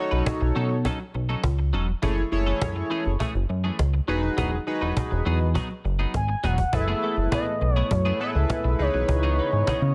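A straight 4/4 groove at 102 BPM drives this late-night, danceable excerpt of early-eighties boogie funk in F# dorian, with a close, dry, woody cajon, a glossy chorused synth bass sitting dark and up front, a mellow chorused polysynth accompanying on chords like B9 and F#m9, and a bright, twangy clean electric guitar riff treated with analog chorus. A drum fill at 6.1 seconds leads into a second section at 6.7 seconds. Just ahead of it, from 6.2 seconds, a smooth portamento lead with vibrato, chorus and phaser takes the melody, and a detuned, slow-attack analog pad settles in the background from 6.7 seconds under F#m11 and C#m9. Light reverb gives the mix a gentle sense of space.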